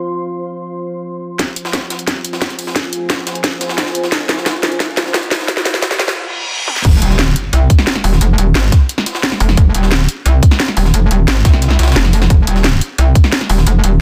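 A deep, moody ambient pad in F minor opens this dark technical drum and bass excerpt, its detuned sawtooth chords softened by chorus and built-in reverb and pumping against the beat. At 1.4 seconds the drums arrive at 176 BPM for a build-up: a tight electronic kick and a layered kit with a cracking snare, bright hats, crash and toms sit up front, while a gritty, pitched-up jungle sampler kit with an overdriven, high-tuned snare plays in the background, and a very quiet riser and reverse cymbal lead into an impact. The drop lands at 6.8 seconds with an aggressive, metallic FM wobble bass, saturated and chorused, giving the dense, heavily limited mix a mechanical, dark drive.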